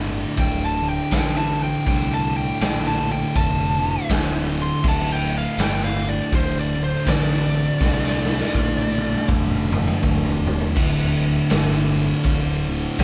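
Hypnotic and brooding, this swung stoner and doom metal excerpt sets a pair of thick fuzz guitars, one dark and one warm, grinding out a low riff in the background over a growling, bright, overdriven fingered bass, while a very quiet tonewheel organ holds full, lightly overdriven chords through a slow rotary speaker. A compressed fuzz lead guitar sings a high melody from 0.4 to 9.3 seconds, and a raw garage drum kit enters up front at 0.4 seconds with a punchy kick, gritty saturated tone and rolled-off top, driving a fill from 7.8 seconds. The band sounds like it is playing live in one room with moderate reverb.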